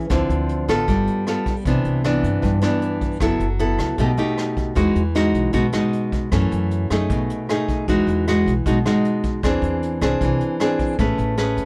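This is a romantic, sunny bossa nova in a straight 4/4 feel, cut from a longer piece. An up-front nylon-string guitar carries the accompaniment, fingerpicked in a classical manner with audible finger squeak, moving through lush extended chords such as Dm9, Cmaj9 and Emaj9 before settling on Amaj9 near 11.0 seconds. Beneath it, a pizzicato upright bass with gut strings gives a woody, thumpy low end, entering at 0.1 seconds. A vintage drum kit played with brushes sits distant and roomy, as if in a small space, with a punchy kick, hi-hat and rim click under a rolled-off top. The production is dark and warm with little reverb, and the music shifts into a new section at 7.9 seconds.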